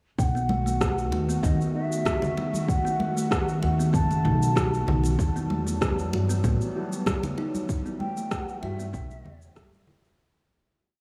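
A breathy bamboo bansuri with diffuse ambient delay, a warbling, nostalgic tape-like pad that pumps, a woody, dark pizzicato upright bass up front, and an overdriven electronic kick with shaker and rim click open this meditative, mystical organic downtempo piece at 0.2 s, the bass laying down a dub-style line under a lightly swung groove. A hollow, vintage-toned kalimba soon joins in the background with a repeating step sequence, bright congas sit close and dry behind it, and from 1.1 s very quiet, muted felt-like synth keys add syncopated rootless chord stabs. The dreamy mix is soaked in huge ambient reverb and fades out from 6.9 s.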